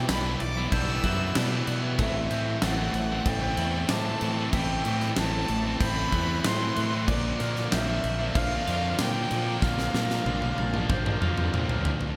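This post-rock passage at 94 BPM in 4/4 feels cinematic and soaring, cut from a longer piece, with chords moving from Em7/B to Am and then to Bbadd9 at 7.1 seconds. A warm, bowed violin carries the melody with smooth vibrato and a touch of digital delay, while a swirling, detuned analog pad with phaser and chorus sustains chords very quietly beneath it. Sparkling glockenspiel arpeggios struck with hard plastic mallets ring in the background through their own delay, joined by a very quiet, twangy twelve-string electric guitar picking clean, compressed arpeggios. Two overdriven guitars sit in the background playing a riff, one bright and the other dark and sludgy, while an up-front fuzz bass adds a warm, fingered low end. A huge arena drum kit with a fat snare, punchy kick and bright cymbals drives the music from 0.1 seconds, rolling into a fill from 9.6 seconds, all set in light studio reverb.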